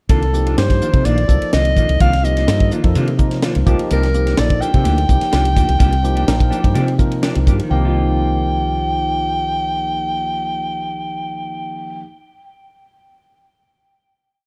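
Electric jazz fusion with a slick, nocturnal mood: a tight funk drum kit with a high-tuned snare rides a fusion groove under a woody, round fretless bass playing a syncopated riff, while a breathy, whispered soprano saxophone with light vibrato carries a motif-based melody up front. A barky, lightly overdriven tine electric piano with analog chorus adds syncopated quartal chord stabs, and a mellow, clean electric guitar with lush chorus plays upper chord shapes. The drums stop at 7.7 seconds, leaving the other parts to hold a final chord in a dark, dry production.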